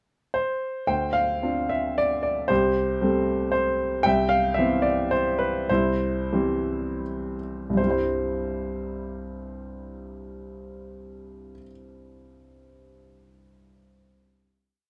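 In a rubato 3/4 that moves between 77 and 118 BPM, this short, complete classical piece for solo grand piano has a relaxed, hopeful mood in C major. The piano enters at 0.3 seconds with a brief pickup into a freely unfolding melody that avoids any recurring motif, while a lower accompaniment keeps a steady pulse beneath harmonies that settle from Dm7 through Am7/C to Cmaj7 and C, slowing from 4.1 seconds before a held final chord at 7.8 seconds. The up-front piano sounds clear, intimate and natural, with its action noise audible, and the room adds a light reverb.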